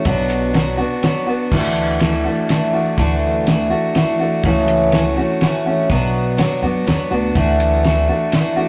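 An up-front, full-bodied picked steel-string acoustic guitar with audible finger squeak carries this nostalgic, open-road folk and heartland rock fragment in 3/4, moving through Bm, Dadd9 and A6/C#, over a woody, thumpy pizzicato upright bass and a damped, dry 70s drum kit with a fat snare, tight kick, rolled-off top and touches of crash and ride, all set in a rough rehearsal-room sound with tube saturation and moderate reverb.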